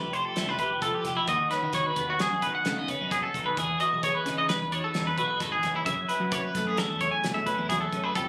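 Captured on a phone in a club-like room with light reverb, this wistful, playful math rock and midwest emo fragment in 5/4 at 131 BPM puts a twangy electric guitar up front, playing clean, compressed arpeggios coloured by warbly pitch drift and analog delay, over a bright twelve-string electric guitar with ensemble chorus, a growling overdriven fingered bass, and a loose indie drum kit whose tight kick, medium-tuned snare and hi-hat sit in a small, pumping room, all moving through Fmaj9, G#m7/D#, Emaj7 and F#m11 in a tuning of A4 = 437 Hz.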